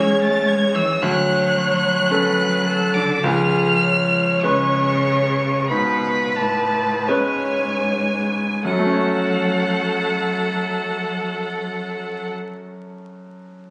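Solemn and elegiac, this slow romantic movement for piano quartet in F# minor moves at a rubato 37-58 BPM in 4/4, easing back through its opening 8.6 seconds before settling on F# minor as a new section begins. A rich, smooth-topped violin with vibrato sings the high melody up front, while a warm second violin and a focused, bowed cello carry supporting lines beneath. A clear grand piano, also up front, accompanies throughout and is heard alone after the strings stop at 12.3 seconds. The sound sits in a moderate recital-hall reverb, captured on a phone in the room with added studio reverb and a layer of vinyl crackle, in an excerpt cut from a longer piece.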